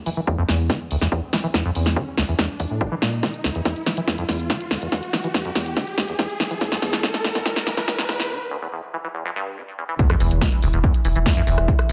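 A squelchy, resonant sawtooth acid bass riff sits up front through a filter sweep in this dark, driving peak-time techno build at 142 BPM, carrying analog chorus, delay and sidechain pumping over a dry, punchy analog drum machine of hi-hat, rim click, shaker and snare playing a fill, with a high-passed electronic kick and a background riser, until a break at 8.3 s gives way to the drop at 10.0 s, marked by an impact, where a thick, tube-saturated sub bass and an evolving drone of moving overtones arrive, all set in a moderate stone room reverb.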